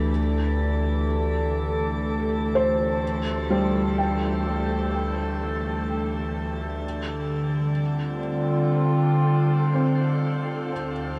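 A wet shimmer reverb with a 9.0-second tail gives this brief ambient fragment, cut from a longer piece, a spacious and reflective air. Up front, a warbly tape-like pad holds sustained chords throughout, its dark, nostalgic, lo-fi tone colored by chorus and its own reverb, with slow attacks and long releases. Beneath it, a felt-muted upright piano plays soft arpeggios through a delay, sounding mellow, boxy and intimate, with audible action noise, until 10.9 seconds. At 10.7 seconds a very quiet reversed texture appears, bright, granular and dreamy, lasting to the close at 11.2 seconds. The harmony drifts from D9sus4 to Gsus2/D before resting on Dm.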